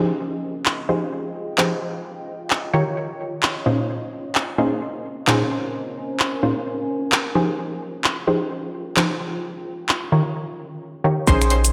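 A dreamy mix soaked in plate reverb opens this moody, bouncy excerpt cut from a longer UK garage piece, a two-step groove at 130 BPM in 4/4 with a 61% swing on the sixteenths. Punchy, detuned sawtooth chord stabs with a filter pluck, chorus and delay sit up front from the start, bright and quick to decay as they move through Fm9, Eb9 and Bbm11 before returning to Fm9 and Eb9. Alongside them a deep, dark ambient pad of unison saws and a sine sub octave swells in slowly with chorus and its own reverb, pumping against the sidechain until 10.8 seconds. The tape-warm garage kit enters at 0.7 seconds, layering cabasa, finger snaps, handclaps and hi-hat close to the listener. Only at 11.3 seconds do a tight electronic kick and a hollow, knocking FM bass on Bb1 arrive, punching through briefly as the excerpt cuts off.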